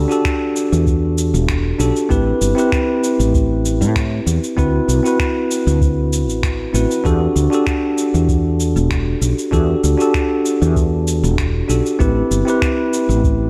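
Sunset chillout in E minor at 97 BPM, this smooth, warm excerpt moves with a gentle 16th-note swing in 4/4. A bell-like tine electric piano carries the chords from the start, its bright, clean tone placed up front and trailed by analog delay. Beneath it, a woody fretless electric bass sits low and growly, round and punchy, thickened by analog chorus. An electronic kick drum enters at 0.2 seconds with a deep, dry thump, while quieter electronic shaker and finger snaps add a gritty, tape-tinged texture from 0.1 seconds. The harmony drifts through Em11, Am9 and D13 before returning to Em11 and closing on Am9 at 12.0 seconds, all set in a dreamy mix soaked in a lush hall reverb.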